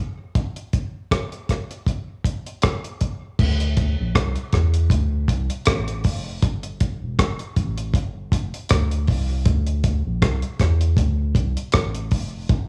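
A low-reverb home cassette recording carries this meditative, deep dub reggae fragment, cut from a longer piece, with a gently swung feel. A dry acoustic reggae drum kit starts at 0.4 seconds, sitting up front with a tight kick, rim clicks, hi-hat and dark crash cymbal. At 3.4 seconds a soft, round sub bass with a triangle and square-wave tone enters up front, its fast-attack, sustained notes holding the low end until the close at 12.7 seconds.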